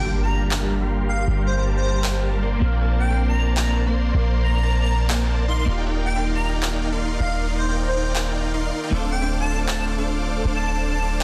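Lightly reverberant and densely limited, this dreamy, bittersweet future bass fragment in G minor moves at 157 BPM with a half-time, gently swung feel, as a huge, detuned supersaw riff runs through a low-pass filter sweep over a deep, boomy 808-style bass, a soft, airy lead carries the melody with chorus, cassette-tape colour and delay, a twangy clean electric guitar sits in the background with analog chorus and dub echo, overdriven, layered electronic handclaps enter at 0.5 seconds, and a barely audible impact opens the passage over chords of Gm9, Bbmaj7, Ebmaj7 and Dm7.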